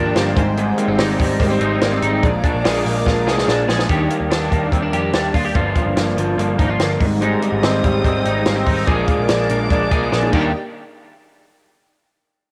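A straight 144 BPM pulse in 4/4 drives this bright, breezy jangly indie pop cut in Eb major, built on a compact cocktail drum kit with a tight kick, high-tuned snare and dark cymbals, and a round, foam-muted picked bass. Up front, a twangy, slightly broken-up electric guitar plays chorused arpeggios, while a second picked guitar adds softer accompaniment in the background, joined by glossy, detuned retro synth keys with filter sweeps and a sul tasto string section holding sustained chords. The synth keys and strings drop away between 3.9 and 7.2 seconds, and the take carries the small-room ambience of a home recording on cassette.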